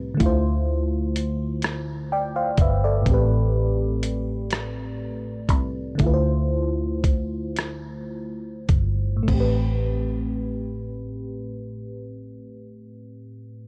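Slow six-eight R&B in A minor with a sultry, late-night mood, this short cut from a longer piece drifts at roughly 34-42 BPM and slows down between 3.1 and 9.3 seconds as the chords move between Dm7 and Am9. An up-front FM electric piano carries the accompaniment with a warbling, mellow vintage tone, a noise layer and a phaser, while a dark, round, foam-muted fingered electric bass sits low beneath it. A gritty, compressed sampler-style soul kit with a thumpy kick, hi-hat, rim click and crash plays until 9.6 seconds, and the dry mix sits close with little reverb.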